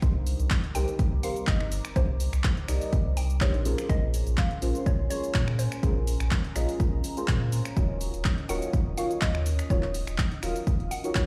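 Moody and late-night, this deep house excerpt moves at 124 BPM with a light 16th-note swing over Cm9, Bbm9 and Ebm9 chords, driven by a dry, overdriven, up-front analog kick and a punchy drum machine of finger snaps, handclaps, hi-hat and shaker. A round sine sub bass and soft, dark chord stabs, treated with chorus, phaser, cassette tape and tape echo, pump against the kick alongside a detuned, wave-folded ambient pad that sits in the background. From 0.7 s a woody FM mallet pluck adds a mellow melody, and the whole mix sounds as if played on a big sound system in a bare room with large studio reverb.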